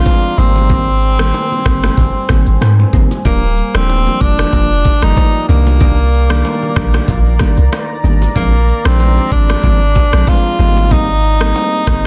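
Afrobeats at 94 BPM with a lightly swung sixteenth feel, joyful and romantic, this excerpt sets a breathy, subtone tenor saxophone melody with scooped notes, light vibrato and delay over soft, round electric-piano-like synth keys carrying chorus and tremolo through a progression from Abmaj7 through Ebmaj9, Cm9 and Bb7. A boomy 808-style bass sits up front beside an electronic afro-pop kit of knocking kick, metallic hats, rim click and shaker, re-recorded in a large room with soft clipping on the snare, while very quiet, distant bongos and congas ring with hard hands and stop at 11.7 seconds. A deep, moody, detuned ambient pad with chorus and built-in reverb enters at 0.2 seconds in the background, all within a dense, heavily limited modern master.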